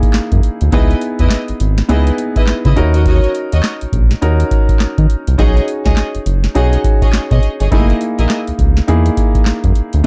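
New jack swing R&B with a bouncy, punchy feel, this short cut from a longer piece rides a swung sixteenth-note groove. A booming analog drum machine sits up front with a deep kick, crisp snare, metallic hi-hat and handclaps, the snare, claps and hats given a short room. A round analog bass enters at 0.3 seconds, also up front, its sawtooth and sine tones touched by ring modulation, with a fast attack and sustained, evolving notes. A clear baby grand piano supplies polished accompaniment, and from 0.7 seconds a lush studio string section adds bowed stabs with vibrato and a smooth top. The harmony moves through rich extended chords such as C#m9, D#m7 and B69 before returning to F#13, and the dark, warm production keeps the sound close and dry.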